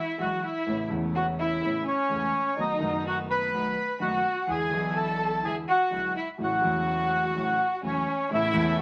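Vinyl crackle and a short, wet studio reverb frame this nostalgic, playful tango excerpt in A major, moving at 126 BPM in 4/4 with a rubato feel. A reedy, vintage-toned bandoneon carries the melody up front, while a close solo violin adds a second line with vibrato, portamento and a soft attack. A smooth grand piano accompanies, a distant string section plays floating, sul tasto stabs, and a woody pizzicato upright bass sits in the background, as the harmony moves from Eadd9 and Aadd9 through B7, E7 and A6 back to Aadd9.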